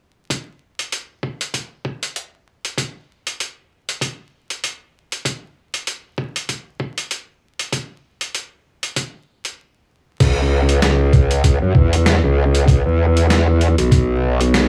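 Glitch hop at 97 BPM in C# minor with a funky, playful swing, where a gritty, pitched-down boom bap drum kit with crash, hi-hat and a high-tuned snare rides alongside a thumpy, compressed electronic kick under vinyl crackle and small-room ambience, breaks off at 9.6 seconds, then returns at 10.2 seconds as a growling, wobbling, saturated bass with chorus and overdrive pushes up front in this excerpt from a longer piece.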